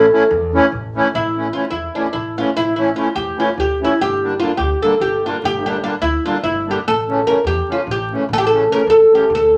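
A vinyl crackle and a moderate studio reverb frame this fiery, virtuosic Balkan wedding-band excerpt in 7/8, driving at 293 eighth-note beats per minute in A Phrygian dominant. Up front, a plectrum-plucked fretless oud with double strings carries the melody in a woody, acoustic voice, while a close-miked, dry accordion supplies reedy, full accompaniment with a slow beating in its tone. Beneath them, a growly pizzicato upright bass on steel strings anchors the harmony as it moves from A to G minor at 4.0 seconds and back to A at 6.9 seconds.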